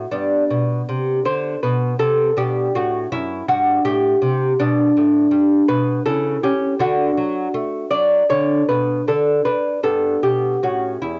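A solo lute carries this serene, baroque-style dance, fingerpicked on nylon double strings, some of them octave-doubled, with a mellow, delicate tone placed up front. The music moves in a gentle triple metre with a flexible, rubato feel, ranging from E2 up to D5 across the roughly 11-second excerpt, which is cut from a longer piece. The harmony rests on G for most of the opening before passing through A7/C#, D and Bmadd9 from about 6.1 seconds, pausing briefly on an unharmonized moment and then returning to G and closing on A. The sound has the soft, homespun character of a cassette home recording, with the top end rolled off above 7.7 kHz and the lute carrying a trace of tape colour. A light reverb and the ambience of a small room give the playing an intimate, close setting.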